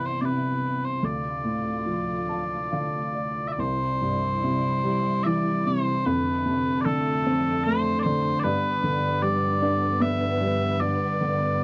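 In a rubato 3/4 at roughly 69-77 BPM, this short fragment of a mournful, longing Celtic slow air sets sweet, mellow small bagpipes carrying the melody up front over a woody, slightly detuned upright piano that adds a fill from 1.9 to 3.6 seconds, while a dark, lush bowed string section with vibrato holds sustained chords beneath, captured in a dry, close 1970s-style studio recording.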